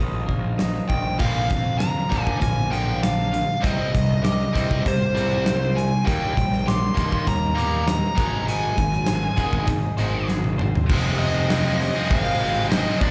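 A nasal, overdriven lead guitar with a parked wah carries the melody up front through this dark, cathartic excerpt of quiet-loud alternative rock at 99 BPM in F dorian, over a growly fuzz bass, a huge arena drum kit with a punchy kick, fat snare and bright cymbals in a pumping room, a distorted riffing guitar that enters at 1.2 seconds, and a twangy twelve-string electric playing clean, compressed arpeggios with spring reverb in the background until a drum fill hands off at 10.9 seconds to a very quiet, scooped high-gain guitar riff, all heard as a live gig through the venue's PA with club reverb.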